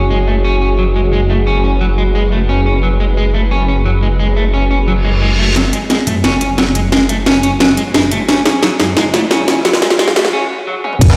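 This dark, mechanical slice of technical drum and bass opens on a sustained F#sus2 chord from a deep, moody ambient pad in the background, joined by a slightly broken-up electric guitar playing arpeggios up front through tape echo and a growling, detuned saw bass snarling underneath, all three pumping with the sidechain. A reverse cymbal, riser and sub drop arrive at 5.0 seconds before an overdriven drum kit with a cracking snare, bright hats, crashes and toms drives a build-up from 5.6 seconds, moving into a short break before a tight electronic kick and a gritty, pitched-up breakbeat kit land on the impact at 11.0 seconds. The mix sits in a lush hall reverb, heard as if through a big sound system in a bare stone room.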